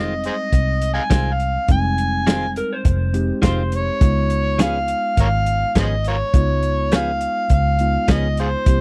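A straight-eighth groove at 103 BPM in 4/4, with only a faint swing on the sixteenths, drives this brooding, mournful soul blues fragment, cut from a longer piece and moving from Fm7 to Db7. A muffled, dry drum kit with a tight kick, medium-tuned snare and hi-hat sits up front from 0.2 s, while a round, foam-muted fingered bass anchors the low end with a dark, amped tone. Leading the way, an overdriven harmonica sings a gritty, jazz-style solo line full of vibrato, scooped notes and tongue slaps. Beneath it, a reedy electric piano heard through its built-in speakers holds the accompaniment, and a clean, compressed guitar recorded direct adds picked stabs. Between 2.6 and 3.7 s, a second picked guitar through a small old amp, slightly broken-up and bathed in spring reverb, slips in a brief lo-fi line, all within a close, 1970s-style studio sound with little room.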